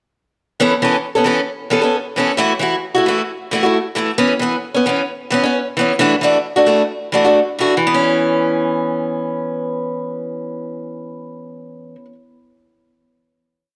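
A lone picked steel-string parlour guitar, bright and boxy with audible finger squeak, opens this short, joyful highlife piece at 0.6 seconds with up-front rhythmic strumming in upper chord shapes, touched by slapback echo and a moderate plate reverb, before settling on a final chord at 7.8 seconds.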